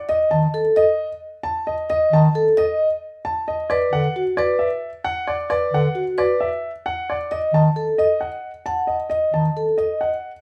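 Set in a moderate large-studio reverb, this hypnotic, urgent fragment of minimalist classical pattern music moves at 133 BPM in a straight 4/4, with an intimate, clear baby grand piano carrying the high melody (its action noise audible), a metallic, ringing vibraphone with medium mallets and slow motor vibrato spinning arpeggios, and a warm bass clarinet holding a low accompaniment that enters at 0.3 s. A D#(b5, no3) chord arrives at 7.3 s, and the bass clarinet stops at 9.5 s.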